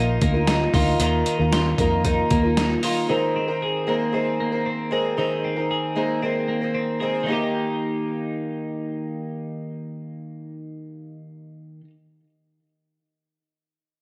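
The recording sits in a moderate echo chamber, giving this bright, youthful slice of jangly indie pop an airy, roomy glow at 115 BPM in Eb major. A fingerpicked twelve-string acoustic guitar carries the accompaniment throughout, its woody, boxy tone on old strings shimmering with octave doubling, while a twelve-string electric guitar plays twangy, clean arpeggios up front, touched by subtle chorus and tape echo. For the opening seconds, a dark, round, foam-muted electric bass gives punchy support until 2.8 seconds. Alongside it, a gritty, pitched-down sampler-style boom bap kit with a thumpy kick, medium-tuned snare and hi-hat, overdriven and re-recorded in a large room, plays from 0.2 to 2.9 seconds. The guitars then continue alone as the harmony moves from Ebsus2 to Abadd9 and settles on Eb at 7.3 seconds, where a new section begins in this excerpt cut from a longer piece.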